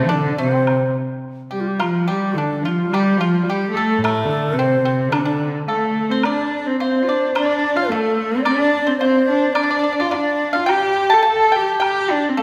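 Wistful and graceful, this piece of Chinese traditional chamber music, cut from a longer work, moves with a rubato feel around 108 BPM in 2/4 and the D yu mode, with a rich, bowed cello carrying the vibrato-laden melody up front while a breathy, bright bamboo xiao, tongued and end-blown, and a dry, percussive pipa played with fingerpicks add second lines, a woodblock enters in the background at 0.7 s, and a wet recital-hall reverb surrounds the ensemble.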